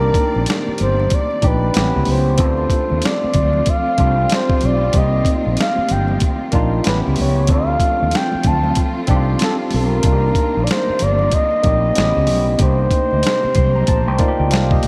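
A bucket-muted trumpet opens this soulful, sultry neo-soul R&B passage, its veiled, breathy tone carrying the solo melody from the start over a barky tine electric piano, bowed strings, fretless bass and congas, with a boom bap drum kit joining at 0.1 seconds. The tempo sits at 94 BPM in 4/4 with a lazy 16th-note swing, moving through Cm9, A7 and Dm7 in C dorian. The trumpet plays in a dark, whispered, intimate jazz style with soft attacks and scooped notes. The electric piano sounds bright and lightly overdriven through a combo amp with a subtle chorus, and it takes a fill from 13.2 seconds to the end. Underneath, the fretless bass is growly and amped, while the sampler-style drums sit up front, compressed, pitched down and gritty, with a thumpy kick and a medium-tuned snare. A studio string section holds expressive sustained chords with vibrato and portamento in the background, very quiet high-tuned congas add soft-handed, vintage texture, and a cathedral reverb soaks the whole mix in a dreamy haze.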